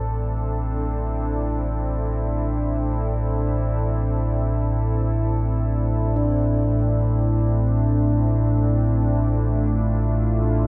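Drenched in a cavernous cathedral reverb, this ominous dark ambient drone in free time and A minor sets a rumbling, nasal, ring-modulated low drone up front beside a moody, warbling chorused pad that moves from Am to Dmadd9/A at 6.2 seconds, while a metallic, slowly beating bronze singing bowl, sounded with a felt mallet, fades in from the background across this 10.7-second fragment of a longer piece.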